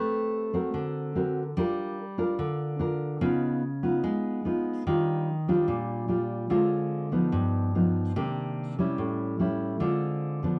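A solo nylon-string guitar opens at once, sitting up front with a warm, full-bodied, acoustic tone and the fresh sound of new strings. This is a smooth, intimate bossa nova fragment of about 10.6 seconds, cut from a longer piece, moving at 146 BPM in a straight 4/4. The guitar is thumb-plucked across a range from G2 to B4, with a deep classical character, and finger squeak brings the player close. The harmony drifts through rich extended chords, from Am9 and D7b13 through Gm7, Db9 and Ebmaj9, then Dm7b5, G7b13, Cm9 and A7 before settling back on Dm7b5. Close, detailed microphones and a light reverb give the recording a gentle sense of space.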